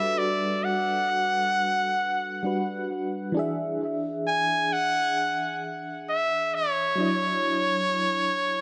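A clear trumpet with vibrato and a smooth top sings a pop-style solo melody over a dark, full-bodied FM electric piano with tremolo; both are up front and sound together from the very start of this tender R&B piece, cut from a longer work. The swung 16th-note feel drifts from Gmaj7 to E7 and then to Dmaj7/F# at 7.0 seconds, while tape echo on both parts and a moderate echo chamber reverb give the echo-heavy mix a dreamy haze.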